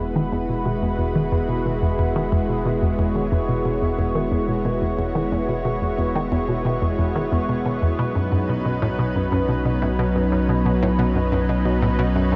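A straight 90 BPM pulse in 4/4 carries this cosmic, luminous stretch of sequencer-driven ambient space music in E major, where a hollow, bouncy square-wave pluck riff treated with chorus, phaser and delay rides above a round sine sub bass, while a lush, warbling, detuned unison pad with chorus and shimmer reverb sustains Eadd9 before shifting to Badd9 at 8.0 s, all of it set in a huge, wet ambient space with a 7.7 s reverb tail.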